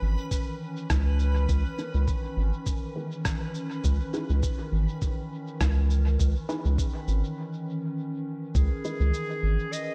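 A 102 BPM groove in 4/4 with a light 16th-note swing sets up this deep, hazy ambient dub cut, sitting in C# minor on a C#m9 chord. From 0.3 seconds a muffled, pitched-down electronic kick thumps with overdrive, alongside a compressed shaker and rim click that carry dub echo and the grit of a small room. Beneath them a round analog bass holds the low end up front, dark and sine-like, while a warbling, nostalgic pad sustains chords through chorus, phaser and its own reverb. A reversed, granular texture swells dreamily on a high B, and from 1.8 seconds a muted, detuned dub chord stab plucks through a filter sweep, coloured by phaser, cassette wear and echo. After a break at 7.4 seconds, a smooth-topped clarinet enters at 8.6 seconds with a short classical-style solo line trailing dub echo, all within light digital ambience.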